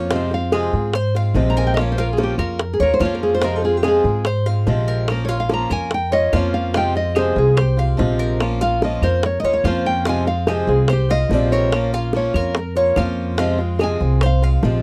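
Latin Cuban son with a guajira lilt, this sultry, danceable passage in F minor moves at 145 BPM in a straight 4/4, rocking between Fm and Bbm throughout. A warm, fingerpicked nylon-string guitar carries the melody as a solo for the full 14.8 seconds, over a boxy, picked swing-style acoustic guitar, metallic double-string arpeggios from the Cuban tres, and a dark, thumpy gut-string upright bass sitting up front. Tight, high-tuned bongos played with soft hands enter at 0.1 seconds, and band-limited, woody claves sit in the background from 0.5 seconds, in a dry, close 1970s-style studio sound.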